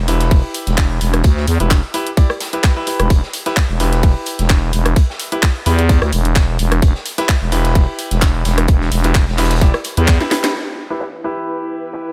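A growling, thick FM bass with tube saturation, sidechain pumping and a filter sweep drives this aggressive, bouncy bass house excerpt in E minor at 129 BPM with a light swing, joined by a tight, up-front electronic kick, a garage kit with a cracking snare and low-passed hats, a gritty raw kit with high-passed hats and snare set in the background, and clear concert grand piano stabs with dub echo, while after a drum fill at 10.2 seconds an ethereal, airy pad with chorus and tremolo enters at 11.1 seconds.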